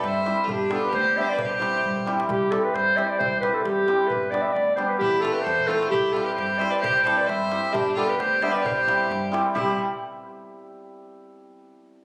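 A lightly swung 2/4 pulse drives this festive, exuberant Balkan wedding-band snippet, with a close, dry clay-shell darbuka in the background adding fills at 1.8 and 5.6 seconds under a dark, woody pizzicato upright bass. Up front, a warm, classical-style solo clarinet carries the melody with slapback echo, while a shimmering, ringing hammered dulcimer supplies the accompaniment. A bright, earthy bowed violin plays a distant second line, dropping out at 2.1 seconds and returning at 5.0 seconds. The whole is caught on a phone in a reverberant recital hall.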